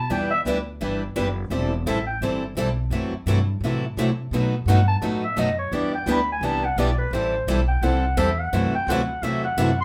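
A growling, raspy clarinet leads this playful, swinging excerpt of acoustic gypsy jazz. It plays from the start until 2.2 seconds, then returns at 4.7 seconds and carries on to the end with scooped notes, a light vibrato and a subtone. Beneath it, a pizzicato upright bass on gut strings gives a woody, thumpy pulse throughout. Two picked steel-string parlour guitars supply the accompaniment: one bright and boxy, the other quieter and mellower with audible finger squeak. The harmony cycles through minor-key changes such as Em9, F#m7b5 and B7. A wet club reverb gives the small band a lively, close-quartered ambience.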